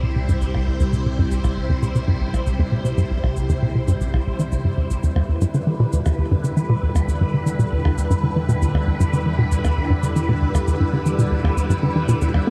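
Mysterious and expansive, this ambient, sequencer-driven space music in 4/4 sets a tight, punchy sawtooth sequencer bass riff up front with cassette-tape grit and delay, under a swirling, bright string machine whose sustained chords fade in through ensemble chorus, phaser and shimmer reverb, while a warbling, wave-folded analog drone evolves in the background and electronic cabasa and percussion blips with delay fade in from 0.3 seconds, all within a huge ambient reverb as the chords move from C to Em7 at 5.0 seconds in this fragment of a longer piece.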